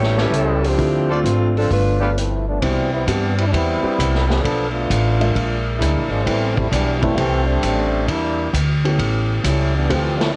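A swinging 4/4 at 132 BPM drives this brassy, energetic big band piece, built on a woody pizzicato upright bass, a vintage drum kit with dark cymbals and a punchy kick, and a warm, deep-bassed concert grand piano in accompaniment. A dark, tight saxophone section with vibrato carries the melody at the start, set against bright trumpet stabs, before the clear trombone section enters at 2.2 seconds and takes a solo from 2.6 seconds over shifting jazz chords. It has the lo-fi character of a home cassette recording in a lightly reverberant room, with tape echo on the saxophones and plate reverb on the trumpets.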